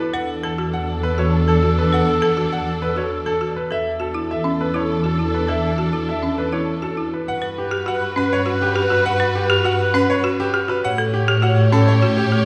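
Hypnotic and propulsive, this short excerpt of minimalist classical pattern music moves at 101 BPM in a straight 3/4. A brilliant concert grand piano carries the melody, while a woody, rustic marimba struck with medium hard mallets spins arpeggios beneath it, both sounding from the very start. An airy alto flute, soft in attack and distant, adds a second line, and a lush bowed string section holds sustained chords with expressive portamento and vibrato. Up front, a rich symphonic double bass section anchors the low end with its bowed ensemble tone. The harmony moves from E9sus4 to Gmaj7 at 7.3 seconds and then to A7 at 10.8 seconds, the whole ensemble set in the wet bloom of a scoring stage reverb.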